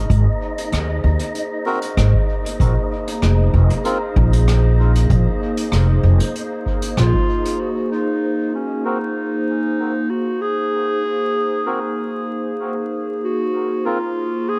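A mellow, present clarinet carries the melody from 7.0 s, its phrases trailing dub echo over a warbly, nostalgic tape-like pad of detuned sustained chords treated with chorus, phaser and reverb, in this spacious, meditative ambient dub excerpt. Before the clarinet arrives, a woody pizzicato upright bass sits up front beside a dry, deep electronic kick, distant brushed hi-hat and rim clicks softened by filtering and dub echo, and an airy, wind-like noise layer, all of which fall away by 7.6 s. Reedy, breathy melodica stabs, darkened by a low-pass filter and dub echo, drift through both halves, while vinyl crackle and light reverb colour the recording.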